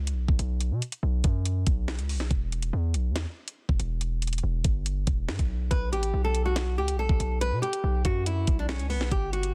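A half-time drill groove at 141 BPM in 4/4 drives this tense, cold hip hop excerpt, cut from a longer piece. A hard-hitting 808-style bass sits up front from the start, punchy and heavy, with a sine body, a noise layer, a fast attack and a decaying tail, ranging from E1 to B2. The electronic, tape-warm drill kit enters at 0.1 seconds with a knocking kick, a sharp snare and warm hi-hats, all carrying a vintage 12-bit sampler grit. Bass and drums alone carry the opening break, moving from B5 to Em at 2.3 seconds. At 5.7 seconds, back on B5, a bright, fingerpicked nylon-string guitar takes the melody in a classical style between B3 and B4, its finger squeak audible. The mix is dry, with a dense, heavily limited modern master.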